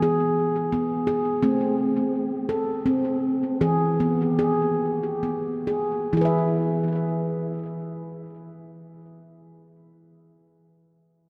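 Bathed in a deep, wet cathedral reverb with a long tail, this hypnotic, gentle excerpt of meditative world music in 3/4 and E major sets a lone handpan up front, its mellow, ringing nitrided-steel tones played with soft fingertips in lilting, lightly swung arpeggios from E3 to E5 through tape echo, moving from E to Am to E as the tempo eases from around 85 toward 64 BPM between 1.4 and 6.1 seconds, before the handpan stops at 10.4 seconds and the reverb rings on.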